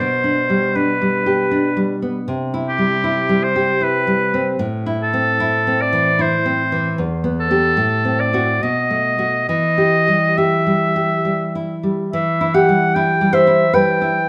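Yearning and elegiac, this romantic duo for oboe and classical guitar unfolds in triple metre with a free, rubato feel. The oboe carries the melody in a bright classical voice with light vibrato, singing as the solo line up front across its G4 to G5 range. Beneath it, the nylon-string guitar supplies fingerpicked accompaniment with a full-bodied, deep classical tone, reaching from low E2 up to C5 and sitting equally forward in the mix. The harmony moves from G/B through C and Am to Em, then leans through F#dim/A and B7 before resolving back to Em, and the opening section returns at 12.1 seconds. A moderate recital hall reverb surrounds both instruments, and the passage is cut from a longer piece.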